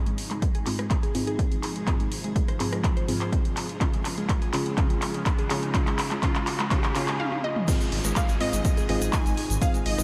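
A straight 4/4 pulse at 124 BPM drives this euphoric, hopeful progressive house excerpt in Ab major, where a punchy, overdriven electronic kick sits up front alongside an overdriven deep house kit of claps, hi-hat, rim click, toms and crash, while a dark, rumbling detuned saw bass, a glassy crystalline wavetable pluck arpeggio, deep mellow chord stabs with a nasal, tape-worn edge and an evolving phased pad all pump against the sidechain, with very quiet risers and downlifters drifting beneath. Filter sweeps on the arpeggio and stabs carry a build-up with drum fills until the drop at 7.7 seconds, just after a lush unison pluck melody with tape echo arrives at 7.2 seconds, joined by a grainy egg shaker and, from 8.2 seconds, a smooth supersaw second line. Everything floats in a dreamy, cathedral-like reverb, with diffuse ambient delays trailing the plucks, stabs and supersaw.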